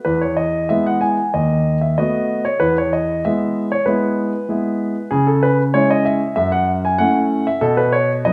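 A rubato 4/4 pulse around 95 BPM carries this elegant, graceful classical-period piano sonatina excerpt in E major, played by a solo baby grand whose clear, polished, up-front tone and long sustain ring through a moderate recital hall reverb as the harmony moves from E through B7/D# and C#m to F#m7 before settling on B at 7.6 seconds.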